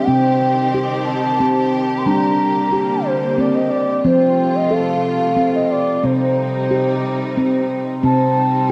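A handpan, a bansuri and a bowed string section all sound together from the opening moment of this meditative, hypnotic world piece, cut from a longer work in C kumoi at 60 BPM in a straight 6/8. The handpan sits up front and carries the arpeggios, its stainless-steel tone ringing and mellow under soft fingertips in a boxy small room. Above it the bansuri plays the melody between C5 and C6, bamboo-toned and airy, with vibrato and tongued notes, close-miked and trailed by tape echo that it shares with the handpan. Alongside them, the studio string section holds lush, focused ensemble chords with vibrato, moving through Cm, Gm, F and back to Cm by 6.0 seconds. A wet spring reverb and the soft haze of a home cassette recording give the short passage, which runs to 8.7 seconds, a meditative, hypnotic quality.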